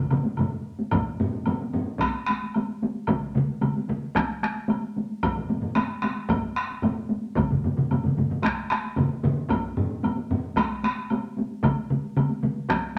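Powerful and driving, this short cut from a longer Japanese traditional piece sets a taiko drum ensemble in straight 4/4, with several layers of hard-stick drums carrying the music from the opening moment. One taiko layer sounds compressed and saturated, another carries a live-room ambience, and a close-miked layer sits up front, while a lower-level close-miked layer joins at 0.9 seconds. A woody woodblock in a small room adds a lighter percussive edge, and the whole ensemble is wrapped in a wet studio reverb.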